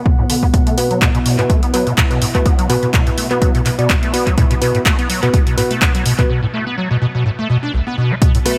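Acid house at 125 BPM in 4/4, with a light swing on the sixteenths, this short cut from a longer piece feels driving and trippy. A squelchy, resonant square-wave acid bass sits up front with overdrive, ensemble chorus and dub echo, playing a riff under a filter sweep that runs from 0.0 to 8.2 seconds. An overdriven, dry and punchy electronic kick sits up front in the drums, joined by an analog drum machine supplying handclaps, hi-hat and rim clicks, also overdriven and touched with dub echo. In the background a dark, warbling, nostalgic pad holds detuned sustained chords with slow attack, chorus and sidechain pumping, while a clean tine electric piano enters at 0.8 seconds with echoing stabs. A break arrives at 6.3 seconds, and the whole mix sits in a moderate echo-chamber reverb with a heavy lean on delay.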